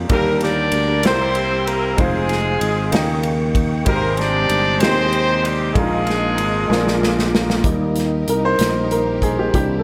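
A woody upright piano with slapback echo and a growly fingered electric bass open this soulful, reverent slow gospel piece in 6/8 at 64 BPM in Eb major, joined at once by a punchy, up-front country drum kit, a mellow, flute-like tonewheel organ with slow rotary speaker sitting in the background, and a tight, vintage horn section carrying the melody with octave doubling, slapback and tape echo until 7.3 s, before a drum fill hands over to a piano solo from 7.6 s over a lush, bowed string section, set in a big arena sound with concert hall reverb.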